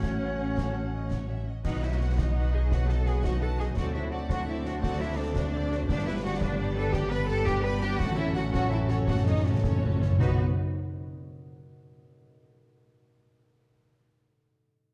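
Heroic adventure film score in a rolling 12/8 at 112 BPM, triumphant and soaring, cut from a longer piece, with a lush string body of violins carrying the melody over bright, focused second violins and intense violas, while a rich double bass section sits up front beneath expressive cellos and mellow French horns holding sustained chords. A ringing harp plays arpeggios throughout, snare, bass drum and bright clash cymbals drive the pulse, and clarinet, flute, trumpet stabs and clear trombones appear only in the opening moments before the round, calf-headed timpani enter at 1.6 s. The tempo slows from 6.6 s as the timpani play a fill from 8.0 s, and the harp rings on alone after the rest stop at 10.4 s, all within a dark, moderately reverberant staging.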